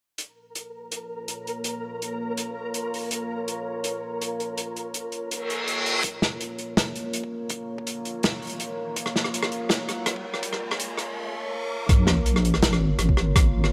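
A light small-room ambience frames this dark, tense excerpt of half-time drum and bass. An acoustic soul drum kit with a rolled-off top plays hi-hat, rim click and a medium-tuned snare beneath a moody, full-bodied ambient pad pumping with sidechain and chorus, while a flickering, grainy texture glimmers through reverb in the opening stretch. A reverse cymbal swells just before 6.0 s, when an overdriven, knocking electronic kick arrives as a riser builds tension, and at 11.9 s a sub drop and impact open the drop, where a deep, wobbling bass with tube saturation enters up front.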